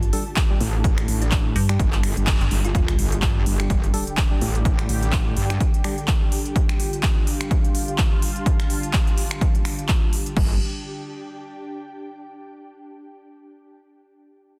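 Bass house with a swaggering, gritty swing, built on an overdriven, punchy electronic kick and a crisp big-room kit of snaps, claps and hats, where a distorted, wobbling metallic bass snarls up front alongside a decaying digital FM bass, while a dark, hollow organ stab and a bright, resonant sweeping pad pump in the background, a tine-like synth pluck sits softly behind them, and an ethereal, airy pad pumps beneath it all, and a very quiet sub drop lands at 2.7 seconds in this dense, heavily limited cut.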